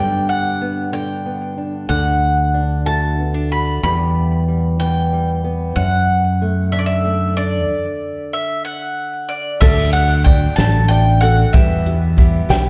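Swaying in 6/8 at 62 BPM, counted in dotted quarters, this hopeful, nostalgic indie folk excerpt builds its arrangement as it goes. Up front, a bright, woody mandolin carries the melody with slapback echo and analog delay. Beneath it sit a dark, boxy fingerpicked old ladder-braced acoustic guitar with aged strings and slapback echo, and a punchy, direct fingered electric bass, moving through G, D, Em and D/F#. After a stop at 7.7 seconds, the arrangement fills out at 9.6 seconds. A picked steel-string acoustic guitar with finger squeak and slapback echo sits in the background, a light fingerpicked ukulele adds echoed arpeggios, and an unplugged drum kit played with bundle sticks brings a fat snare, tight kick, hi-hat and crash cymbal, while a very quiet, mellow felt-muted upright piano with audible action noise plays a fill at 12.5 seconds. The performance is heard as a live gig through the venue's PA, with small room ambience and recital hall reverb.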